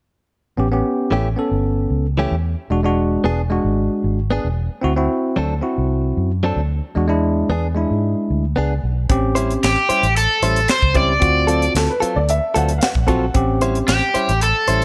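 Soulful and swaggering, this straight-eighth soul blues moves at 113 BPM in A major and is cut from a longer piece. A bell-like tine electric piano and a dark, round, foam-muted electric bass open the groove up front, and a bright, clean, compressed electric guitar soon adds picked stabs recorded direct, over a progression of A7, E7 and D7. At 9.1 seconds the harmony shifts to A7#9 and D7#9 as a tight funk kit enters, dry and polished, with a high-tuned snare, airy hi-hat and snug kick. An overdriven slide guitar takes the melody at 9.6 seconds, sitting loudest in the mix with a bright, fingered tone. From 11.8 seconds a woody, boxy upright piano with short sustain adds a brief second line through tape echo, all set in light reverb and small room ambience.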